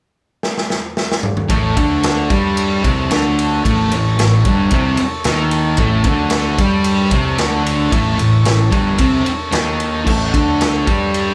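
A straight 4/4 garage rock groove at 112 BPM in A mixolydian kicks off with a drum fill on the raw, saturated kit at 0.4 seconds, then at 1.5 seconds a thick, double-tracked fuzz guitar riff, a punchy fuzz-picked bass and a buzzy, overdriven combo organ holding sustained chords with light vibrato crash in together on an A chord, with a short organ fill at 5.0 seconds, all captured with light reverb like a band playing live in one room, the kit pumping in its small space, for a raw, swaggering cut from a longer piece.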